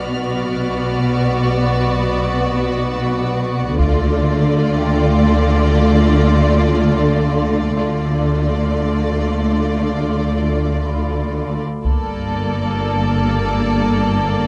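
A dark, up-front bowed double bass section anchors this tense, eerie suspense cue cut from a longer film score, joined by lush cellos, rich violas, a focused violin melody held on D5 over a smooth second violin line, a high violin texture that drops out at 3.3 s and a faint, ringing vibraphone played with soft mallets, while heavy-stick taiko hits at 3.8 s and 11.8 s mark the shifts from Bm to Dm to Gmadd9 in a moderate scoring-stage reverb.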